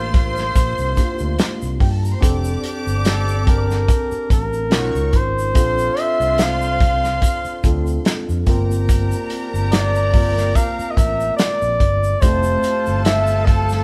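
A smooth, up-front flugelhorn carries a silky, bittersweet melody over woody, lush bowed strings, a mellow electric piano, dark background horn stabs and a round fingered electric bass in this slow, lightly swung 1970s-style soul excerpt at 72 BPM in G dorian, joined at 0.1 seconds by a dry, tight soul drum kit with hi-hat, kick and snare and at 0.4 seconds by a grainy tube shaker, all played live in one room with light reverb as the chords move from C7sus4 through Bbmaj9 and Gm11 to Fmaj7.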